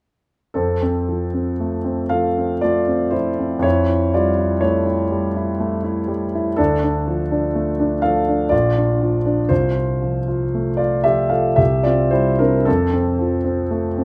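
A solo concert grand piano enters at 0.5 s and carries this serene, dreamy romantic nocturne in F major, a short excerpt cut from a longer piece, moving in a rubato 3/4 at roughly 55-63 BPM from deep bass notes up to F5, its intimate, smooth, vintage tone set up front with audible action noise and light reverb as the harmony passes from F through A7/F, Dm and Bb before settling through C back to F at 12.7 s.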